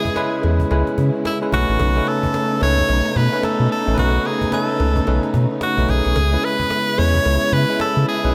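New jack swing R&B at 110 BPM with a swung, confident and bouncy feel, this short excerpt sets an edgy, punchy tenor saxophone melody up front over bell-like tine electric piano, both touched with slapback echo, while lush bowed strings sustain C#m7 and B9 chords in the background, a deep, round analog bass with a ring-modulated edge drives from 0.1 seconds alongside a snappy cajon, and a very quiet metallic cowbell sits close and dry, all placed in a big arena-like hall.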